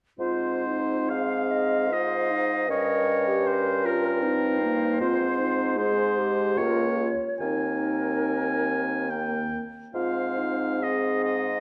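A dark, reverberant recital-hall sound frames this short fragment of a slow romantic movement for wind quintet in Ab major, a lyrical and tender passage in 3/4 at 64-79 BPM with a flexible, rubato feel. All five players sound together from 0.2 to 11.6 seconds: an airy, distant concert flute carries the melody with vibrato in the background, while a clear oboe sits up front on the second line. A mellow clarinet and a warm French horn fill in the accompaniment above a bassoon bass with light vibrato and a soft attack, as the harmony moves from Ab through Eb7/G and Bbm/Db to an Ebsus4 that settles on Eb and back home to Ab.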